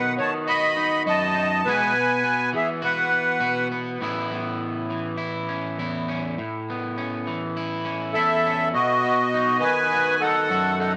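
A sweet, reedy accordion with light tremolo tuning carries the melody up front over a twangy, slightly broken-up picked electric guitar with subtle chorus in this joyful, warm highlife excerpt at 102 BPM in A major. The accordion drops out at 3.7 seconds and returns at 8.1 seconds while the guitar keeps accompanying over B, Eadd9/B and Aadd9 chords, all bathed in a wet spring reverb.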